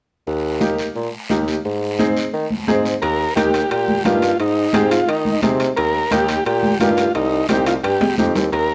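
A vintage, mellow combo organ with heavy vibrato carries the melody from 3.0 s in this sunny, festive cumbia excerpt at 174 BPM in Eb major, riding over a clear, classical-style bassoon bass line with light vibrato, a woody, slightly detuned upright piano, a raspy, close guiro, and distant, high-tuned congas played with soft hands, while ringing metal-shell timbales join at 3.0 s and a drum fill arrives at 8.0 s, the whole set in a lightly reverberant space.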